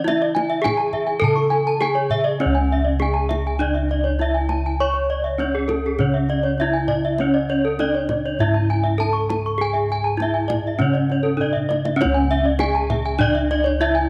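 Brilliant and shimmering, this Balinese gamelan passage in 4/4, cut from a longer piece, sets an up-front, bright bronze metallophone melody struck with horn mallets and pulsing with paired-tuning beats over two arpeggio metallophones, one ringing and one dark and smooth, while round, beating bossed gongs carry the bass and a deep, close kendang adds a drum fill at 11.4 seconds, all within a moderate echo-chamber reverb.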